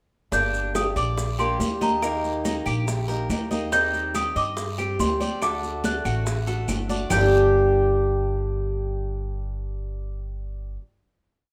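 A worn, slightly out-of-tune celesta carries the melody of this warm, danceable Cuban son and guajira piece, its bell-like, delicate hook phrases ringing sweetly from a boxy small room. Beneath it, a Cuban tres picks a metallic, arpeggiated guajeo on double strings with some octave-doubled courses, while a fingerpicked swing-style acoustic guitar adds a softer accompaniment of strums and muted slaps. An up-front upright bass plays a dark, thumpy pizzicato tumbao on gut strings that anticipates the chords, moving through a minor progression over the verse. The percussion sits in the background: thick-skinned congas with slaps and open strokes, tight, distant bongos in steady eighths with hand bell, a raspy guiro, grainy maracas, and woody claves that join at 0.8 seconds with a two-bar time line. The percussion drops out at 7.2 seconds, leaving the celesta, tres, guitar and bass to hold a final chord with light reverb until the piece ends.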